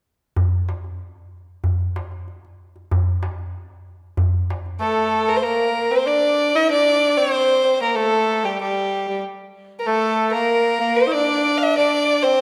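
This excerpt from a longer Arabic maqam piece opens with a darbuka alone at 0.4 seconds, its large metal shell giving a crisp, deep sound that is compressed and saturated and sits up front. At 4.8 seconds a clear violin takes the melody in maqam bayati on D, a single bowed player with vibrato, a biting edge and an airy bow, ranging from G4 to F5 with intense, soulful longing. Alongside it a growling tenor saxophone carries a second line in a jazz style, bright yet raspy and gritty with a soft attack, moving between G3 and an E4 lowered by nearly a quarter tone. The darbuka stops at 5.4 seconds, leaving violin and saxophone to carry the piece at a steady 95 BPM in straight 4/4 until 12.4 seconds. A wet concert hall reverb with a two-second tail surrounds the ensemble, fitting a recording made in a church or concert hall.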